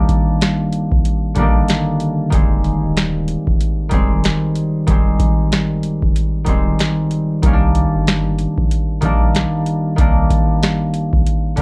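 A swung 16th-note groove at 94 BPM in 4/4 drives this dark, tough boom-bap hip-hop excerpt in C minor, carried by a booming analog drum machine that enters at 0.1 seconds with a deep kick, crisp snare and metallic hi-hats sitting up front. A fingerpicked concert harp supplies the accompaniment from the start, its ringing acoustic tone placed up front and coloured by a cassette tape treatment. Beneath it, a very quiet sub bass with an added octave blends sine and triangle qualities, with a fast attack and long sustain that give the low end a full, deep foundation. The harmony moves from a rootless Cm7 to Fm7 at 2.3 seconds and returns to Cm7 at 7.4 seconds. The whole mix carries a light reverb and the worn, warbling character of old tape, with a warbly pitch drift that lends the beat a dusty, weathered feel.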